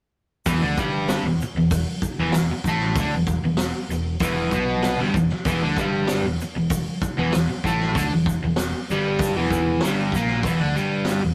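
A crunchy, bright overdriven electric guitar leads this swaggering, rowdy garage rock excerpt, its double-tracked, picked riff sitting up front from 0.5 seconds and opening on an E5 chord. Beneath it, a fingered electric bass adds a warm low end, captured both direct and through an amp. A vintage acoustic drum kit, also up front, drives a straight 4/4 feel with a punchy kick, a high-tuned snare and hi-hat, its mid-forward tone carrying a rolled-off top. A grainy egg shaker ticks along in the background. The whole thing has the rough character of a rehearsal-room recording, with tube saturation and a moderate studio reverb, and it is cut from a longer piece.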